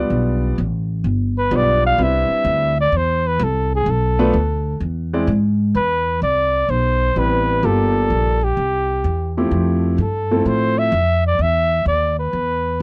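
Small-group swing and bop jazz at 128 BPM with a swinging, moody feel, in this fragment of a longer piece a woody pizzicato upright bass and an intimate concert grand piano, its action noise audible, open together before a warm, up-front flugelhorn enters at 1.4 seconds with a light-vibrato solo melody over chords moving from G7 through Cmaj9 and Fmaj7, and the piano drops out at 10.9 seconds, all captured in a dry, close 1970s-style studio sound.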